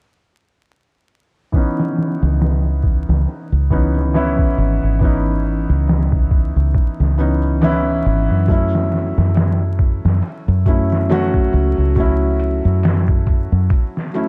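A dry, vinyl-crackled sound frames this dark, smoky trip hop fragment at 69 BPM in C# minor. From 1.5 seconds, a soft felt-muted upright piano with audible action noise, harmonic tremolo, low-pass filtering and tape echo accompanies a gritty, pitched-down sampler-style kit with a thumpy kick and filtered, tape-toned hats and snare, all on a swung 16th feel. At 2.2 seconds a round, punchy deep dub fingered bass joins up front, as the harmony moves from C#m9 to F#m7 at 8.5 seconds.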